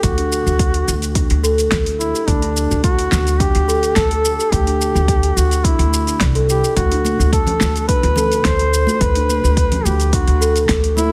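A warm, up-front duduk sings a folk-style melody with vibrato and scooped notes, tinged with vintage 12-bit sampler grit and digital delay, over a woody, thumpy pizzicato upright bass, a buzzing kalimba playing delayed arpeggios, an electronic kick and a deep house kit of fat snare, metallic hats and shaker, with ringing bongos and congas joining in the background at 6.9 seconds in this earthy, peaceful organic downtempo excerpt at 107 BPM in D mixolydian, moving from Dsus4 to Bm/D under light reverb.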